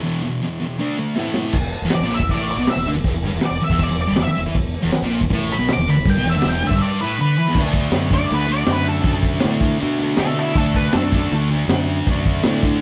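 A thick, bright fuzz guitar opens alone at 0.0 seconds, its double-tracked riff moving through E5, D5 and A5 power chords in a raw break before a short drum fill at 1.2 seconds brings in a crunchy breakbeat kit. This is rowdy garage rock at 160 BPM in a straight 4/4, played by a band heard live together in a stone room with a moderate reverb. The drums sit up front with a dark, saturated, gritty sound, a tight kick, a high-tuned snare and dusky cymbals, while a growling fingered bass enters at 1.5 seconds with an overdriven edge. From 1.9 seconds an octave-fuzz lead guitar carries the melody high above the riff, reaching up to D6. The riff settles on E5 through the middle stretch and shifts to D at 7.6 seconds, and this cut from a longer piece ends at 12.8 seconds.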